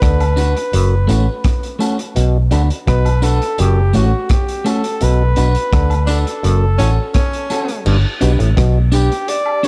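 A straight 4/4 pulse at 84 BPM sets a laid-back, serious roots reggae groove in B minor. The crunchy breakbeat drum kit sits up front with a tight kick, rim clicks, hi-hat and dark crash cymbals, while a distant woodblock and tambourine stay in the background. A vintage muted fingered electric bass, round and punchy, anchors the low end, and an overdriven auto-wah clav adds a bright, twangy riff beneath a slightly broken-up, compressed electric guitar accompaniment with tape echo. Over the alternating Bm and F#m chords, a close-miked flugelhorn carries the melody with light vibrato and tape echo, joined at 6.1 s by a breathy, intimate tenor saxophone second line during a band accent that begins at 5.0 s. The harmony shifts to G at 7.9 s, and the dark, warm production with light studio reverb frames this cut from a longer piece.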